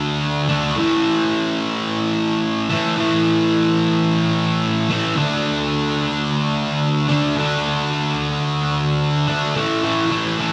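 A thick, bright fuzz guitar carries this short rock piece alone, its distorted, picked, double-tracked tone sitting up front as it moves between D5 and A5 power chords across A2 to D4. At 109 BPM in a straight 4/4, the mood feels hopeful and euphoric, like a band playing live in a stone room whose wet reverb rings for 1.1 seconds. The clip is cut from a longer piece, ending at 10.5 seconds.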